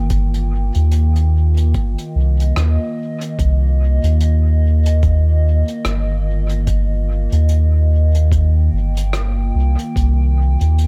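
Ambient dub in a hazy, deep mood, this excerpt rests on a single Cm11 chord held by a warbly, nostalgic pad with chorus, built-in reverb and a gritty lo-fi sampler character, sitting low beneath a round, up-front sub bass. A muffled, thumpy, pitched-down electronic kick carries the swung 4/4 pulse until 10.2 seconds, while a distant brush kit adds hi-hat and rim clicks touched with dub echo. The mix stays dry of reverb overall but heavy with echo.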